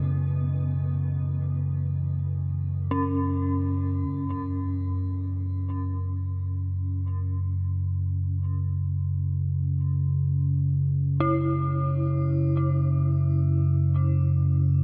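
A dark ambient drone in free time, vast and ominous, this excerpt rests on a deep, rumbling drone that sits up front from 0.0 to 14.8 s while an eerie, inharmonic synth bell drifts through arpeggios treated with chorus, tremolo, delay and shimmer reverb. A blurred, cloudy granular pad holds sustained chords with a bright, evolving grain and shimmer reverb until 4.1 s, when the harmony shifts from F#m to F#5. Everything hangs in a cavernous cathedral space with a 5.8 s decay.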